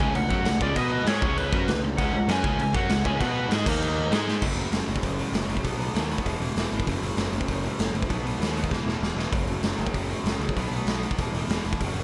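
A dry, close-sounding clip cut from a longer punk rock track, upbeat and energetic, with a gritty, saturated drum kit sitting up front. The kit hits hard with a punchy kick, a medium-tuned snare, hi-hat and crash, its rolled-off top and pumping stone-room ambience giving it a raw garage character, with fills at 4.3 seconds and between 8.7 and 9.3 seconds. A biting, overdriven lead guitar carries a short melody with tape echo over the opening 3.5 seconds, while a raw garage guitar drives a picked riff until 4.4 seconds. An overdriven semi-hollow guitar keeps its riff going through the whole clip, and a growly fuzz bass, direct and amped, anchors the low end throughout. The opening power-chord passage gives way at 4.4 seconds to a second section that moves between F#5, B and E chords.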